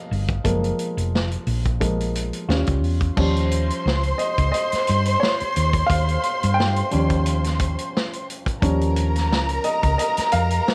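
An intimate baby grand piano opens this romantic, smooth slice of lush 1970s-style soul at 88 BPM, its short sustain and audible action noise colouring a rootless Gbmaj7 that moves to Eb7 over a lightly swung sixteenth-note feel. A dark, round hollow-body electric bass with tube saturation sits up front, joined by a vintage drum kit with dark cymbals, a medium-tuned snare and a punchy kick. At 3.2 seconds a warm, bowed string section with expressive vibrato and a smooth top enters as a second line while the piano carries on soloing, all set in a small room ambience.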